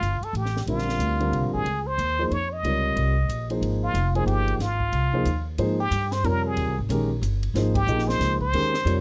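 A plunger-muted trumpet leads up front with a brilliant, wah-wah voice, carrying a searching jazz solo line in this spiritual modal jazz passage cut from a longer piece. It moves at a brisk 183 BPM in 3/4 with a swung eighth-note feel, over Bbmaj9 and Dbmaj9 harmony before settling into Ab major on Abmaj9 at 5.6 seconds. A woody, dark pizzicato upright bass with steel strings sits close in the mix beneath the horn. From 0.7 seconds a warm concert grand piano adds intimate, smooth, vintage accompaniment with deep bass and audible action noise. A compact, dry cocktail kit keeps time on hi-hat, ride, snare and kick, with dark cymbals, a high-tuned snare and a punchy kick. The whole band hits an accent at 7.7 seconds, captured by close, detailed microphones in a nearly reverb-free room.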